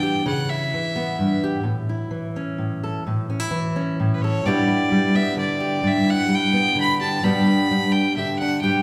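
Wistful and reflective, this brief excerpt of acoustic folk in 3/4 at 129 BPM sets a single bright, nasal, earthy fiddle carrying the melody from 0.0 to 1.4 seconds and again from 4.1 seconds over a warm fingerpicked steel-string acoustic guitar accompaniment, both up front in a church or concert hall with a wet recital-hall reverb, as the harmony moves through C#m7b5, A and G6 before settling on G.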